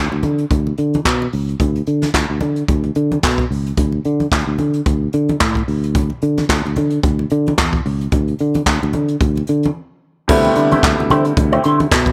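A studio reverb surrounds this joyful, celebratory disco excerpt at 110 BPM in 4/4 with a light sixteenth-note swing. A growly, punchy fingered electric bass and a brushed drum kit sit up front from the start: the kit has a boomy kick, dark cymbals and handclaps treated with gated reverb, while low-tuned, damped congas murmur in the background over a Bmadd9 that gives way to open, chordless groove. After a short break at 9.8 seconds, a clear concert grand piano with deep bass and a twangy, compressed electric guitar through a wah envelope filter enter together on an Am7 at 10.3 seconds.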